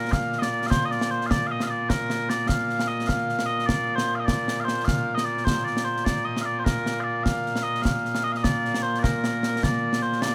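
Ceremonial and stirring, this short excerpt of Scottish pipe music in a straight 6/8 sets mellow, sweet small bagpipes carrying a continuous, vibrato-tinged solo melody up front, joined from 0.1 seconds by concert snare and bass drums with bright cymbals in a small-room acoustic, all under a light reverb.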